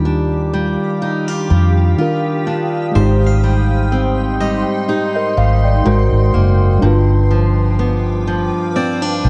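A round, foam-muted electric bass sits up front in this slow, smooth R&B excerpt at 62 BPM, with a gentle 16th-note swing under romantic chords moving from Ebmaj9 to Abmaj7 and on to G7. Soft, intimate felt-like synth keys with chorus and a picked steel-string acoustic guitar playing arpeggios through tape echo, finger squeaks audible, carry the accompaniment, while a blurred, evolving granular cloud pad holds sustained chords. A bright, plucked harpsichord adds texture in the background with its own tape echo, set in a dark, warm production with light studio ambience.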